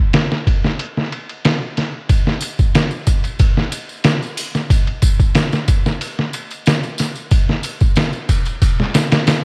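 Worn, warbling cassette-tape ambience with a drifting pitch frames this hypnotic, cinematic trip hop excerpt at 92 BPM, where an up-front, compressed and muffled sampler-style drum kit, pitched down with a thumpy kick, medium-tuned snare, hi-hat and ride, starts at 0.1 seconds and is joined at 2.1 seconds by a ringing, close and dry acoustic tambourine sitting in the background.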